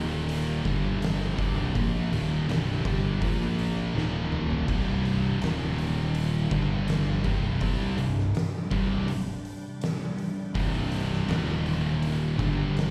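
Sludgy and ominous, this stoner and doom metal passage from a live gig heard through the venue's PA carries a recital-hall reverb, with a scooped, double-tracked high-gain guitar and two dark, thick fuzz guitars (one very quiet, the other in the background with slapback echo) churning out the riff over a growly, punchy fingered bass with overdrive. An oversized, low-tuned drum kit enters at 0.3 seconds, up front with a fat snare and gritty, rolled-off top, and breaks into a fill at 3.9 seconds. Beneath it all, a very quiet, warbling, organ-like drone sustains detuned vintage chords with a slow attack.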